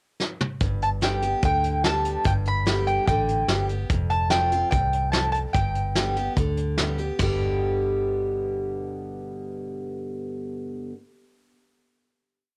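The mandolin stands out most, its woody, double-stringed tone carrying a motif-based melody of song-like phrases high up, from 0.8 to 6.3 seconds, with a cassette-tape color and a touch of plate reverb. This is a short, heartfelt and nostalgic piece of honky-tonk and classic country in G mixolydian, moving at 146 BPM in a straight 4/4, and it opens with a brief drum fill in the pickup bar. The soft brush kit plays a country two groove with a fat snare, punchy kick and dark cymbals, its rolled-off top sitting close and up front until 7.3 seconds. A bright, full-bodied dreadnought guitar alternates bass notes and strums with bass runs, finger squeaks audible, while a foam-muted, round electric bass plays a two-beat root and fifth line with walk-ups. The harmony moves from G to F and back to G, and guitar and bass sustain the final chord until 10.9 seconds, all heard through the light reverb of a homespun cassette recording.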